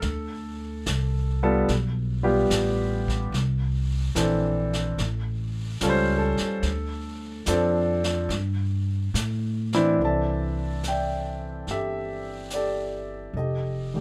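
A romantic, intimate jazz ballad with a gentle swing, where a concert grand piano, up front with deep bass and audible action noise, comps over a woody, dark pizzicato upright bass and a vintage brush kit of brushed snare, hi-hat, punchy kick and snare, whose rolled-off top sits in a small, natural room, all captured by close, detailed microphones with little reverb in this short slice of a longer piece.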